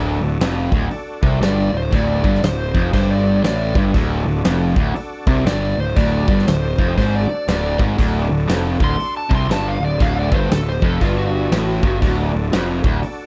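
Gritty and raunchy, this swung blues rock and southern rock excerpt from a longer piece puts a bright, double-tracked distorted guitar riff and a fuzzy, picked electric bass up front over a huge arena drum kit with a punchy kick and fat snare that enters at 0.4 s, while an overdriven slide guitar carries the melody through tape echo from 1.4 s to 12.2 s and a thick, very quiet tonewheel organ holds sustained chords beneath, all captured as a dry, close 1970s-style studio recording.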